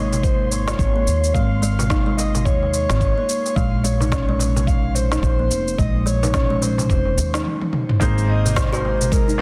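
A loping 4/4 groove with swung sixteenths carries this short cut from a longer organic downtempo piece, its mood warm and hypnotic. A deep electronic kick and an organic electronic kit of shaker, toms and a woody, softly clipped snare sit in a large-room sound, while a clay-shelled darbuka played with hard hands adds vintage, band-limited color in the background, and a drum fill arrives at 7.5 seconds. A thumpy pizzicato upright bass, pumping against the kick, anchors the low end beneath a mellow, ringing kalimba whose hollow arpeggios trail through digital delay and shimmer reverb. On top, a breathy, flute-like synth lead sings a warbling, vibrato-laden melody bathed in lush chorus, delay and shimmer, with a dark, wind-like tuned noise texture breathing faintly underneath. At 8.0 seconds a felt-muted upright piano enters with an intimate, softly pumping accompaniment and audible action noise, and an ethereal, detuned pad slips in very quietly at 8.9 seconds, all within a small, lightly reverberant room and a dense, heavily limited master.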